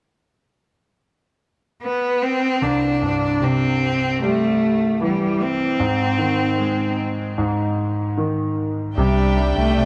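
Tender and heartfelt, this dreamy pop excerpt at 76 BPM in 4/4 opens with a clear, smooth bowed cello melody with vibrato and delay at 1.8 s, joined at 2.6 s by a polished concert grand piano accompaniment with lush chorus moving from Cadd9 to Ab, before a lush studio string section with a smooth top and a round sine sub bass enter together at 9.0 s on Cadd9, all soaked in plate reverb.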